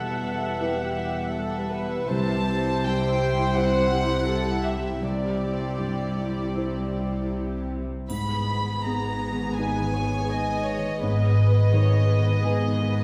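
Heard from further back on a scoring stage bathed in wet reverb, this cinematic, emotional film-score fragment unfolds with a rubato, longing feel. Floating, sul tasto violins carry the melody over a second violin line, while dark, woody violas, a felt-muted upright piano with audible action noise, ringing fingerpicked harp arpeggios, soft-attack cellos and intimate, lightly vibrato double basses fill out the harmony from Emadd9 through Cadd9. A triangle sounds briefly in the background from 8.1 to 9.5 s as the chords move to G#m.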